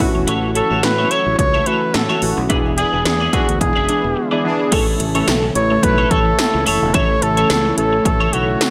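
A romantic, nostalgic 1980s-style pop excerpt in A major at 108 BPM opens with punchy electronic pad drums and a gated snare, a growly fingered bass, a clean twelve-string electric guitar riff with analog chorus, round evolving analog keys and a very quiet organ-like string ensemble holding sustained chords. A clear, close-miked flugelhorn carries the melody up front from 0.6 s with light vibrato, and fat sawtooth synth brass stabs join in the background at 3.3 s, in the middle of the band accent that runs from 2.5 s and resolves on an A chord at 4.7 s. Light reverb and digital ambience surround the mix.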